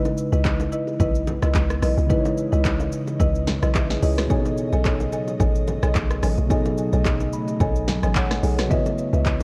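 A swung sixteenth-note groove drives this late-night, soulful amapiano excerpt. It is built on a punchy, up-front deep house kit of kick, snare, handclaps, rim click, hi-hat and shaker, with very quiet, ringing bongos and congas and a hollow, bouncy, decaying log drum bass. A clean, slightly out-of-tune tine electric piano accompanies the C#m9 and B13 chords and plays a fill from 7.1 to 8.7 seconds, while a woody, buzzing marimba adds delayed stabs and an ethereal, detuned pad with chorus, reverb and sidechain pumping sits in the background from 1.2 seconds, all colored by a worn, warbling cassette-tape ambience with drifting pitch.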